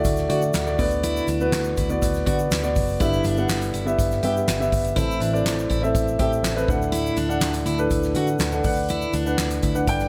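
A straight 4/4 groove at 122 BPM drives this warm, anthemic piano-driven pop excerpt, with a soft-mallet drum kit up front playing boomy kick, fat snare, hi-hat, handclaps and crash in a big room, while a grainy, bright tube shaker sits in the background. A dark, mellow grand piano carries the accompaniment through chords moving from D and Bm/D to G6 and Am, joined from 0.1 s by a round, foam-muted vintage electric bass. From 0.3 s a picked steel-string acoustic guitar adds a full-bodied riff with fresh strings and audible finger squeak, and the mix sits in light reverb.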